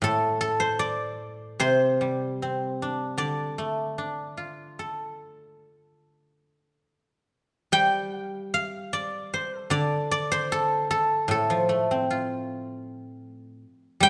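Rubato phrasing loosely around 76 BPM in 4/4 carries this longing, contemplative excerpt of Chinese traditional solo music in D yu mode, where a lone acoustic guzheng, plucked with fingerpicks and spanning A2 to G5, sounds silvery and ringing up front in a moderate concert hall reverb, moving into a new section at 6.5 seconds.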